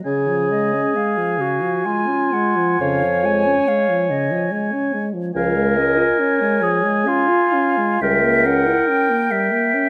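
Close, detailed microphones capture this wind quintet on a scoring stage with a moderate reverb that lingers for about 1.7 seconds, giving the serene, tender passage from a slow romantic classical movement an intimate bloom. In a rubato 3/4 at around 61-72 BPM, the pure silver flute carries the melody with vibrato, a warm oboe adds a high second line, and the mellow clarinet sits up front in the accompaniment beside a dark French horn with a smooth top. A bassoon with light vibrato supplies the bass until 8.7 s, as the harmony settles into D-flat major at 5.4 s and darkens to a D-flat diminished seventh at 8.0 s.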